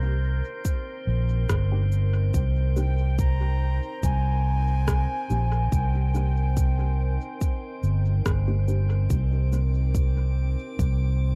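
Meditative and deep, this short ambient dub passage, cut from a longer piece, rests on a single Cm9 chord in a steady, straight 4/4. A round, up-front fingered electric bass and a deep, layered electronic kick anchor the low end, while a tape-warm electronic cabasa and rim click, with dub echo, enter alongside the kick at 0.7 seconds. A moody, evolving pad of detuned sawtooth and sine tones holds sustained chords in the background with chorus and built-in reverb, and a glassy texture of drifting overtones adds a calm, bright shimmer. A muted, filtered dub chord stab with a fast pluck sits low in the mix from 1.7 seconds, coloured by phaser, lush chorus and dub echo. An airy, distant silver concert flute carries the melody with a crisp attack and straight tone until 7.4 seconds, its phrases trailing off in dub echo inside an echo-heavy digital ambience.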